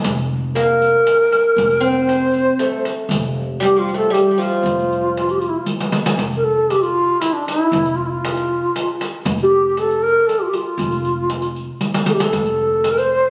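Arabic maqam ensemble music in F maqam ajam at 117 BPM in 3/4, festive and warm, cut from a longer piece, with an airy, reedy low ney carrying the melody up front with vibrato, a plectrum-plucked fretless oud with double strings adding a second line until 5.3 seconds, a thumpy pizzicato upright bass with a woody tone, and a riq with dark jingles and soft hands playing drum fills at 5.7 and 11.8 seconds, the whole captured on a phone in a moderate recital hall with compression and club reverb.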